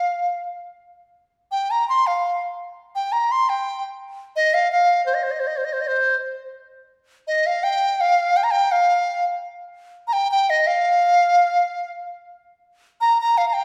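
A bright, pure-toned large dizi plays alone, up front, in this graceful, wistful Chinese traditional passage cut from a longer piece; its bamboo body and buzzing membrane sing between C5 and C6 with vibrato and tongued notes, moving in a loose rubato around 84 BPM in 2/4, tuned to A4 = 443 Hz, shifting into a second section at 6.5 seconds, while a wet recital hall reverb with a 1.6-second decay gives the church or concert hall setting a spacious glow.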